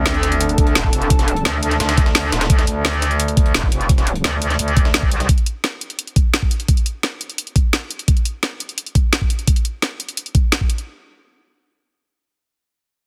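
Dark technical drum and bass at 172 BPM in D phrygian, this aggressive, straight-ahead passage is cut from a longer piece and opens on an impact, with a sub drop sitting in the background for the first 1.1 seconds. A metallic, wobbling FM bass sits up front, saturated and overdriven with chorus and sidechain pumping, and it drives the opening until 5.3 seconds. Above it, an airy, breathy pad with a nasal, detuned edge and a noise layer drifts in with a slow attack and long release, pumping with the sidechain until it drops out at 2.5 seconds. The main drum kit brings a woody snare and bright hats, overdriven and up front, while an overdriven, knocking electronic kick enters at 0.6 seconds. Beneath them, a gritty, compressed breakbeat kit with a high-tuned snare and filtered hats adds texture in the background, all under light reverb and a dense, heavily limited master.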